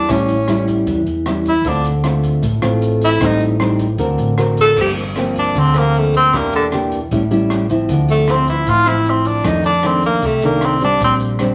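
This intimate, wistful bossa nova excerpt opens with a breathy tenor saxophone soloing up front, alongside a thumb-plucked nylon-string guitar and a round, hollow-body electric bass, with an open jazz drum kit joining at 0.1 seconds. The piece moves at a brisk 154 BPM in a straight 4/4, in D minor, tuned to A4 = 437 Hz. The bright saxophone carries the melody from D3 to A4 with soft attacks, scooped notes and vibrato, falling silent at 11.2 seconds. The classical-style guitar sits close in the mix with a warm tone, supported by the dark, amped short-scale bass fingered low in its register. Further back, the acoustic kit adds a boomy kick, hi-hat, rim clicks and dusky crash cymbals. The harmony moves through chords such as A7, Dm7, Am7b5, Gm7 and Dm9 before settling on Bb69, all within a studio reverb and a layer of vinyl crackle.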